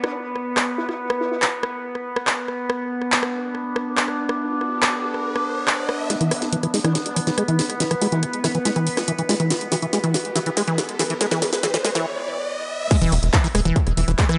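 A straight 4/4 pulse at 141 BPM drives this psychedelic, alien psychedelic trance excerpt, where an overdriven techno kit with a cracking snare, handclaps, hi-hat, rim click and crash cymbal sits up front over a nasal, overtone-sweeping drone holding Bm chords and a background vowel-sweep wobble bass, joined by a background riser at 4.4 seconds, before a squelchy, resonant acid bass riff enters at 6.1 seconds with a filter sweep through the build-up and drum fill, and after a brief break the drop at 12.9 seconds brings a distorted electronic kick and a tight, punchy sequencer bass on E1 under an E5 chord, all in a moderate plate reverb.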